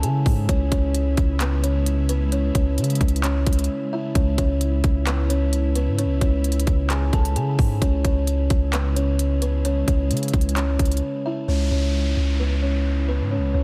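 Brooding and menacing, this half-time trap excerpt in C# minor at 131 BPM sets a buzzing, woody kalimba melody, filtered and trailed by tape echo, over an airy, detuned pad washed in chorus and reverb, with a deep, up-front 808 bass sustaining on C#m and a trap kit of hard-clipped kick, crisp hats, handclaps and rim clicks that drops out briefly at 3.7 seconds and falls away at 11.0 seconds as an electronic downlifter enters at 11.5 seconds within a dense, heavily limited mix.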